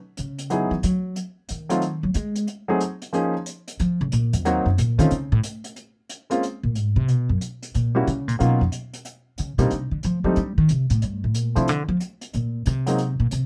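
Playful and relaxed, this swinging jazz piano trio passage in Db major moves at a brisk 183 BPM, cut from a longer piece. The pizzicato upright bass takes the spotlight with a solo throughout, its woody, thumpy steel-string tone sitting up front. A dark, smooth brushed hi-hat stays low in the mix, while the intimate concert grand carries the melody with deep bass and audible action noise, all captured close and dry in a detailed, natural sound.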